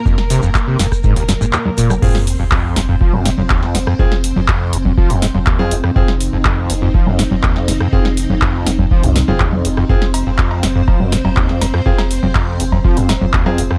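A dry, gritty hardware sound frames this hypnotic acid house excerpt in F minor at 122 BPM, where a lush vintage string machine with ensemble chorus and sidechain pumping holds sustained chords over a squelchy, resonant overdriven acid bass riff with analog delay, a round sine sub bass, a deep tape-warm electronic kick and an up-front electro drum machine of punchy snare, metallic hats, handclaps, congas, cowbell, rim click and crash, while a faint bowed studio string section and a grainy shekere sit in the background until 2.0 s, when the kick returns from a brief dropout and the drop arrives with a very quiet sub drop and clear grand piano stabs carrying analog delay.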